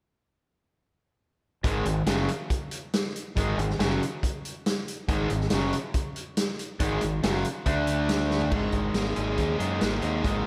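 Classic rock at 139 BPM in a straight 4/4, this driving, confident excerpt from a longer piece brings in everything together at 1.6 seconds: a raw, bright garage guitar and a sludgy, dark distorted guitar play overdriven picked riffs with slapback echo over a growling, punchy fingered bass and an up-front vintage drum kit with a punchy kick and a rolled-off top. The chords move from Ab5 to D5, and a drum fill at 8.3 seconds leads into a new section on Absus2. A moderate scoring-stage reverb gives the whole a big arena sound.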